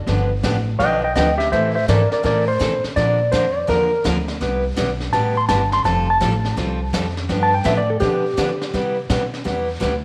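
A swung 166 BPM groove in 4/4 drives this playful, down-home western swing excerpt in C major: a woody pizzicato upright bass with steel strings, a bright, full-bodied picked dreadnought acoustic guitar, and a smooth brushed drum kit with a high-tuned snare, punchy kick, hi-hat and a rolled-off top. Up front, a clean, dark-toned lap steel plays a fingered slide second line beneath an electric slide guitar solo over a G7, Am, Bb, Cmaj7, Fadd9 progression, dropping out at 9.1 seconds while the band plays on to 10.0. A moderate echo chamber reverb gives the whole band a studio ambience.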